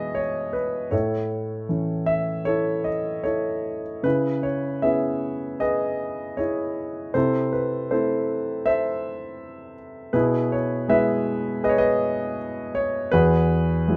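A grand piano carries this lyrical classical solo on its own, its tone warm and placed up front, spanning from E2 to E5. The mood is peaceful, and the playing moves with a rubato feel in an unhurried 4/4. The harmony opens on E/B, passes through A, C#m7 and Am/C, then returns to E/B before settling on Eadd9 at 13.1 seconds. Close, detailed microphones capture the instrument with little reverb, so the sound feels intimate and dry. The 14-second passage is cut from a longer piece and forms a single unbroken section.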